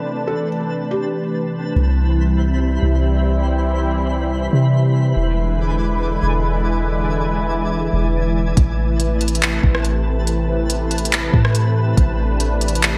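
Atmospheric cloud-rap in a spacious, hazy mood, this hip hop piece moves at 141 BPM in 4/4 with a half-time feel, set in A minor. A sweeping resonant pad holds sustained chords throughout, its detuned sawtooth tone warbling with vintage character through chorus, sidechain pumping and a low-pass filter, while a twinkling granular texture sparkles high above with an octave-up shimmer and lush chorus. A felt-muted upright piano offers a brief, intimate melody near the start, its mellow tone carrying audible action noise through delay, as a filter sweep opens the first 1.8 seconds. At 1.8 seconds a deep, round 808-style bass arrives up front, its sine tone decaying darkly beneath harmony that moves from Amadd9 to Cmaj7 and E7. At 8.6 seconds a smooth R&B drum kit joins with a soft kick, smooth hi-hats, handclaps and rim clicks, tape-warm and treated with gated reverb, framed by light reverb and bright 1980s-style digital production in this excerpt cut from a longer piece.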